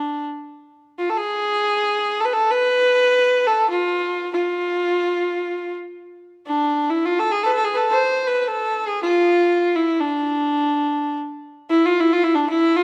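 A moderate recital-hall reverb surrounds a single kamancheh placed up front, its bowed tone biting and earthy with an airy edge. In this short passage from a Turkish makam ensemble piece, the instrument plays alone from 0.0 to 12.8 seconds, gliding between notes with portamento and light vibrato in a hypnotic, longing mood.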